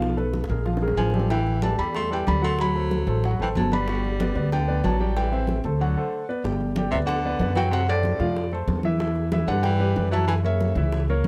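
Lively and sophisticated, this short cut from a longer Afro-Cuban jazz piece moves at a brisk 187 BPM in straight 4/4, centred on G major. A felt-muted upright piano carries the melody in its upper register, its mellow, intimate tone edged with audible action noise, while a baritone saxophone adds a smooth second line below with light vibrato and a soft attack. Up front, a polished grand piano supplies clear, long-sustaining accompaniment, and a woody, thumpy pizzicato upright bass on gut strings anchors the low end. Bright, compressed congas and tight, high-tuned bongos sit in the background, the bongos sounding distant in a large room, with a drum fill passing between 0.3 and 1.3 seconds. The harmony runs through colourful changes such as Abm69, Gmaj9 and F#dim, shifting into a new section at 6.4 seconds and closing on F#7, all captured with close, detailed microphones and light reverb.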